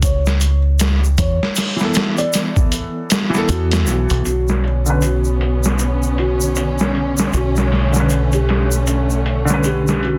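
A dense, heavily limited modern mix in studio reverb frames this brooding, melancholic trip hop excerpt in B minor at 78 BPM, swinging its 16ths over an Esus4 that settles on Bmadd9. Muffled, pitched-down sampler drums with a thumpy kick and low-pass-filtered hats, snare and room sit up front beside a round, dark fingered dub bass, while a close, dry egg shaker ticks underneath and a soft, felt-muted upright piano with audible action noise carries the melody through dub echo. A woody upright piano enters at 1.8 seconds with harmonic tremolo, low-pass filtering and tape echo, lush bowed strings with vibrato arrive at 4.2 seconds, and a filter sweep on upright piano begins at 4.3 seconds.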